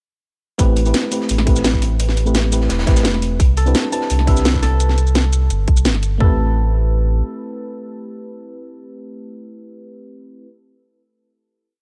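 A deep, full sine-like sub bass with an added octave holds long gliding notes up front in this lush, dreamy liquid drum and bass piece, beneath a soft, warbling FM electric piano that plays syncopated rootless chord stabs with chorus and dub echo until 10.5 s. Two layered electronic garage kits drive a rolling two-step groove, one with a tight kick and floor tom and the other with a cracking snare, bright hats and shaker, while a gritty, saturated acoustic breakbeat with a rolled-off top loops in the background. A fingerpicked Celtic harp enters at 3.6 s with a ringing, repeating step sequence through dub echo, and the piece moves into a final chord at 6.2 s within a small room ambience.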